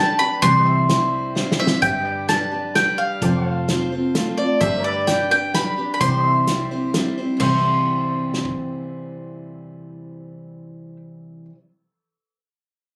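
Captured on a phone in a club-like room with compression, this nostalgic, down-home honky-tonk and classic country excerpt in 3/4 puts a woody, double-strung mandolin melody with tape echo up front beside a bright, full-bodied dreadnought guitar on fresh strings, while a twangy pedal steel with volume swells holds sustained chords in the background, a dark, foam-muted vintage electric bass stays round beneath, and a small-room drum kit with punchy kick, crash, hi-hat and snare plays from 0.4 to 8.6 seconds, adding a fill at 1.4 seconds as the chords move through C, G, F, G and back to C.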